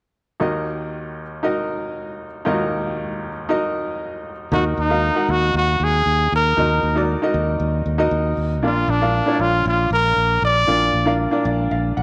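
A straight 4/4 pulse at 117 BPM drives this dramatic pop excerpt in Eb harmonic minor, cut from a longer piece and tuned slightly low to A4 = 436 Hz. A woody upright piano opens alone at 0.4 s on an Ebm chord, its short-sustained, natural tone sitting up front as accompaniment. At 4.5 s a growly, punchy fingered electric bass joins in the low register alongside a brilliant, close-miked trumpet that carries the melody with light vibrato and scooped notes, its pop-style solo line given a slapback echo. The harmony moves to Bb at 8.6 s, and after the trumpet stops at 11.2 s the piano plays a fill to close out the section. A moderate spring reverb and a small room sound frame the parts.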